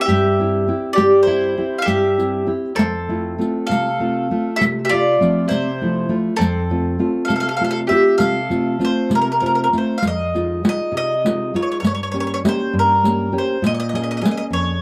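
Italian folk serenade in 6/8 at a rubato 66 BPM, wistful and romantic, with a bright, woody mandolin carrying the melody up front over a full-bodied, fingerpicked nylon-string guitar, while a second, rounder mandolin adds a supporting second line and a riq supplies saturated, jingling percussion. The piece opens in F major, and the second mandolin drops out at 9.7 seconds, just as a guitar fill from 9.1 seconds leads into a turn to F minor at 10.0 seconds over Fm7, Gdim and Bbm7 harmonies. A dark production and a small, wet room give the ensemble an intimate glow in this excerpt from a longer piece.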